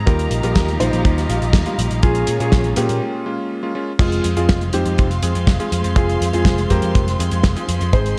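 A lush, bowed string section with vibrato and a filter sweep opens this melodramatic, bittersweet italo disco excerpt in F minor, joined at once by clangy electric grand piano stabs with tape echo and a growly, punchy picked bass up front, moving through Ebadd9 and Bbm7 at 122 BPM. A dark, mellow grand piano carries the melody through its own tape echo over a tight, dry kick and a damped 70s kit with dark cymbals, studio reverb and gated reverb. After a break from 3.0 to 4.0 seconds, the music settles onto Fm at 4.0 seconds in a light studio ambience.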